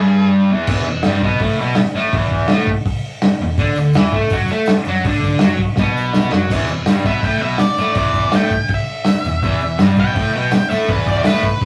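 A rough, tube-saturated rehearsal-room sound with a damp booth ambience frames this swaggering, rowdy garage rock excerpt at 165 BPM, where a bright, double-tracked fuzz guitar riff sits up front over a lo-fi, muffled drum kit with dark cymbals and a tight kick, a punchy bass in the background and a faint jingly tambourine from 3.6 seconds, until a drum fill at 5.8 seconds hands off to a dark octave-fuzz lead guitar solo from 6.5 seconds.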